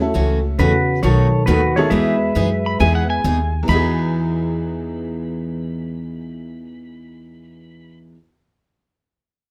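Swinging eighth notes in a brisk 4/4 drive this short, playful western swing fragment, cut from a longer piece. A woody, thumpy pizzicato upright bass sits up front beside a jangly, boxy tack piano with a vintage, metallic bite and a full-bodied picked dreadnought acoustic guitar, its finger squeaks audible. From 0.6 s a twangy pedal steel guitar carries the melody with compressed volume swells and slide, joined by a dark, clean hollow-body jazz guitar in a lower second line, both stopping at 3.2 s. A bright, clean lap steel guitar, played with fingerpicks and slide, joins up front at 2.7 s and plays a high second line to the close. The harmony moves from F#m7 over C# through B7 to Emaj7, all set in a moderate club reverb.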